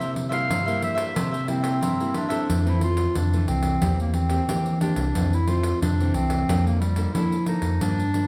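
Samba and choro in F major at 90 BPM in a straight 4/4, this short excerpt from a longer piece has a sunny, festive mood. A clear, close-miked clarinet carries the melody up front in a classical style, ranging from G3 to F5. Underneath, a fingerpicked nylon-string guitar gives classical accompaniment throughout, while a crisp, picked cavaquinho adds warm support only until 2.5 seconds. At that point a fingered electric bass enters, growly and amped, sitting prominently in the mix as the harmony moves from C7 to Fmaj7 and on to Bbmaj7/F. A jingly pandeiro keeps the percussion going from start to finish, and the ensemble sounds as if it were played in a church or concert hall with a reverberant recital-hall ambience.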